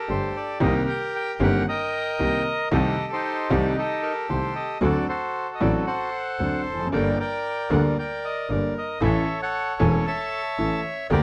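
A reedy, dark bandoneon carries the melody up front from the very start, its smooth line ranging from Eb4 to A5. This dramatic, tense tango moves at 114 BPM in 4/4 with a rubato feel, tuned to A4 = 441 Hz. Beside it, an upright piano with a woody, boxy tone and short sustain accompanies from 0.1 seconds, also sitting up front. A single bowed double bass anchors the low end, its bright, biting sound intense and touched with light vibrato. The harmony moves from Gsus2 through Cm7, Am7b5/C and D7 to Gmadd9 before landing on A at 9.0 seconds, all within a light reverb. Cut from a longer piece, this passage runs to 11.2 seconds.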